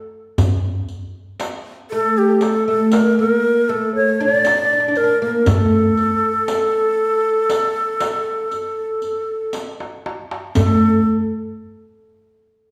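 Heard from further back in a recital hall with wet reverb, this passionate Turkish makam ensemble piece in hicaz on A moves at 118 BPM in a straight 10/8, cut from a longer performance. A crisp, deep metal-shell darbuka played with hard hands shares the percussion with a quieter riq with dark jingles, both entering at 0.4 s, and a drum fill arrives at 9.5 s. From 1.9 s a breathy, tongued ney carries the melody up front with a slapback echo, joined by a mellow, woody fretless oud plucked with a plectrum on a second line.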